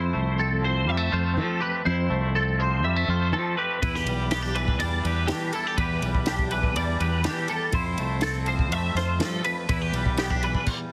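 In a straight 4/4, this wistful, intricate math rock and midwest emo excerpt opens with a clean, fingered twangy electric guitar shimmering with harmonic tremolo, a bright, picked twelve-string electric guitar spinning chorused arpeggios up high, and a growling, overdriven fingered bass underneath, all up front as the harmony moves between Fmaj7 and Em7. A compact cocktail drum kit joins at 3.8 seconds with a punchy kick, a high-tuned snare and dark crash and ride cymbals, dry and close. Light reverb and a heavily compressed, radio-like sound color the mix before the band stops at 10.7 seconds.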